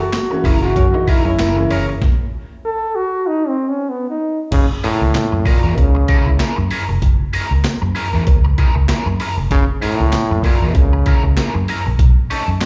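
Funk with a strutting, energetic swagger, heard as a live gig through the venue's PA with club reverb and small room ambience, and cut from a longer piece. An up-front trombone with vibrato and a smooth top carries the melody with slapback echo, soloing from the opening over an F#9 chord until the band drops out into a stop at 2.0 seconds and returns at 4.5 seconds. A gritty, pitched-down sampler-style drum kit sits up front with a thumpy kick, high-tuned snare, hi-hat, handclaps and crash cymbal, joined by a jingly, close and dry tambourine in the background and a dark, round, foam-muted fingered electric bass that is amped and punchy. A crunchy overdriven guitar, picked through wah, spring reverb and slapback echo, fills in the accompaniment. In the opening moments a woody upright piano with short sustain adds stabs, and a tight, vintage horn section with light vibrato plays a brief second line in the background, both ending by 1.9 seconds. 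The groove rides F#9 through the second section before shifting to B9 near the close.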